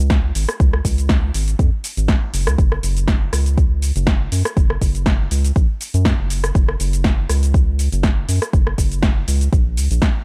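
A lightly swung 4/4 groove drives this relaxed, soulful deep house clip, with a deep, tape-toned electronic kick sitting up front alongside a punchy analog drum machine whose overdriven hi-hat, rim click, shaker and snare add grit. Underneath, a round, dark analog bass with a fast attack and sustained, wave-folded tone pumps with sidechain compression. The mix is dry and close, and the whole passage is cut from a longer piece.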